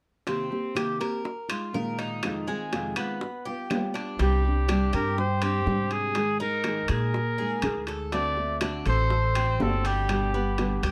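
A straight 4/4 Cuban son and guajira groove at 122 BPM in C minor opens with fingerpicked, full-bodied nylon-string guitar, bright, metallic tres arpeggios on double strings, soft-handed low-tuned bongos, ringing metal-shell timbales and dry, woody claves that sound only until 4.0 seconds, before a vintage trumpet with vibrato and plate reverb takes an up-front solo melody at 4.2 seconds over a dark, growly pizzicato upright bass, giving this danceable, warm Latin piece a close, detailed sound.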